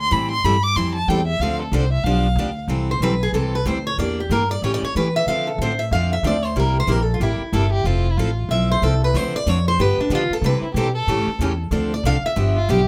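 Jazz manouche in a lively, swinging acoustic string style, this short cut opens with a violin solo, its bowed tone soft-edged and expressive with vibrato and portamento, before the violin returns only in brief passages. A steel-string guitar solo takes over at 2.7 seconds, with bright fresh strings and audible finger squeak, while a boxy archtop guitar carries the melody from 2.9 seconds and a thumpy, woody upright bass with gut strings plays pizzicato throughout. The close, detailed recording keeps every part up front under light reverb.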